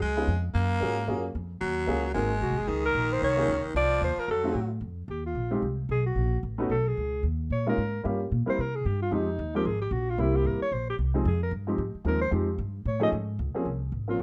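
A late-night, cool slice of small-group swing and bop at a brisk 224 BPM, cut from a longer piece, with the breathy alto saxophone carrying the melody in a mellow, subtoned voice full of scooped notes while a growling, raspy baritone saxophone adds a second line until 4.7 seconds. Pizzicato upright bass with a woody tone and a grand piano playing warm, natural accompaniment sit up front under light reverb as the harmony settles into F minor at 4.8 seconds. From there the alto takes a solo to the end at 14.2 seconds, passing through chords such as Fm7, C7 and an F7alt that resolves to Bbm9.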